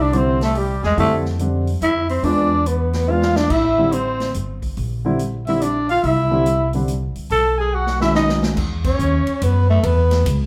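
A growling tenor saxophone carries the melody up front, its dark, raspy, gritty subtone edged with vibrato, scooped notes, a soft attack and a plate reverb. Above it, a breathy trumpet with light vibrato and its own scooped phrasing plays a second line, while a woody, pizzicato upright bass anchors the low end. A concert grand piano with deep bass fills in the accompaniment until about 8.5 seconds, and a swinging drum kit with a boomy kick, medium-tuned snare, hi-hat, ride and crash cymbals adds fills around 3.1 and 7.7 seconds. This relaxed small-group swing and bop piece moves in a lilting three-beat metre, with chords such as Cadd9, E7b9 and Am7 before the band lands a shared accent at 8.8 seconds. The group sounds heard from further back in a club room with a wet reverb, in a short excerpt cut from a longer performance.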